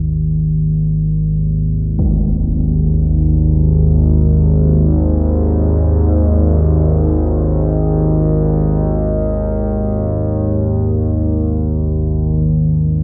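An analog drone sounds from 0.0 s, a resonant sawtooth and pulse-wave tone with slow attack, pulse-width modulation and chorus, sustained up front in the low register on a G#5 chord. This dark, desolate ambient drone drifts in free time, cut from a longer piece and bathed in a long, wet cathedral reverb. A huge, bright impact, low-pass filtered and set in the background, strikes briefly at 2.0 s, while a fade-in on impacts spans the first 12.5 s.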